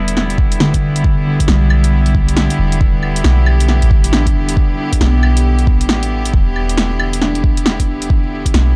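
Future garage at 136 BPM in E minor, melancholic and ghostly, with a swung 16th-note feel over a single Em7 chord, cut from a longer piece. A mellow tine electric piano carries the accompaniment through vintage 12-bit sampler grit and analog delay, while a bright, earthy chamber string section holds sustained bowed chords and a round, sine-like 808-style bass sits deep beneath, all three pumping against the sidechain. A deep house kit of claves, hi-hat and punchy snare comes in at 0.1 seconds, joined by a deep electronic kick at 0.4 seconds, and the whole sound is dry and gritty with a layer of vinyl crackle.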